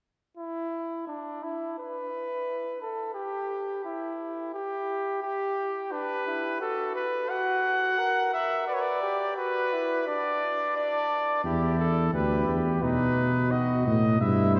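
Solemn and driving, this classical imitative canzona for brass ensemble moves at 87 BPM in a straight 4/4, heard as a short portion cut from a longer piece and set in a wet cathedral reverb with a 6.2-second decay in a church or concert hall. A dark trumpet opens alone at 0.4 seconds on the second line with a soft attack. A clear cornet takes the melody at 5.9 seconds with light vibrato and a present, up-front sound as the harmony moves through Bm/D, F# and Bm, and a mellow tuba with a smooth top enters on the bass at 11.4 seconds under Em and B.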